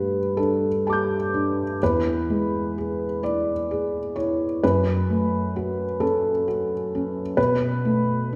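Neoclassical minimalist piano with an intimate, reflective mood, this short excerpt is cut from a longer piece and runs 8.4 seconds. A felt-muted upright piano plays solo throughout, in a 6/8 with a loose, rubato feel. Its tone is soft, mellow and dark, with thick felt dulling the hammers and the action noise clearly audible, so the instrument sits up front and close. The playing spans E2 to G6, moving through Gadd9, E, F#m and B7(no3). A wet recital hall reverb surrounds it, with the room heard from further back, giving the muted instrument a lingering, spacious tail.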